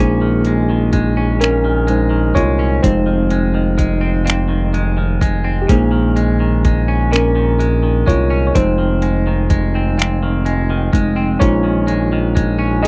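Sultry and late-night, this slow six-eight R&B excerpt in Bb minor moves at 42 BPM, as a worn, slightly out-of-tune tine electric piano with light overdrive takes the solo over Bbm11 and Fm7 chords, a smooth sawtooth synth bass sits up front, a clean, picked semi-hollow guitar adds a second line through lush chorus, and a dusty, gritty sampler-style kit of finger snaps, hi-hat and thumpy kick enters at 0.4 seconds in a dry, close 1970s-style studio sound.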